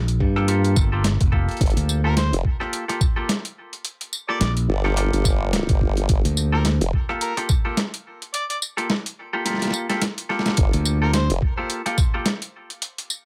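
A dry, close sound with little reverb frames this swaggering, gritty glitch hop excerpt, set at 107 BPM in G minor with a swung sixteenth feel over a Gm9 chord. A sampler-style boom bap kit of hi-hat, rim click, medium-tuned snare and tambourine sits up front with a compressed, pitched-down, tape-warm grit and a small room ambience, joined by an electronic kick with a thumpy, sampler-style character. Down low, a bright, growly fingered electric bass plays from the start until 6.8 seconds, while a formant-sweep wobble bass with a sawtooth-and-sine tone and chorus enters at 1.6 seconds, and the two return briefly together around 10.6 to 11.4 seconds. A clean, twangy picked electric guitar adds compressed stabs with sidechain pumping and digital delay. A mellow, vintage harmonica carries a jazz-style solo melody with light vibrato and its own delay, and a drum fill arrives from about 9.5 to 10.6 seconds before the excerpt runs on to its cut-off.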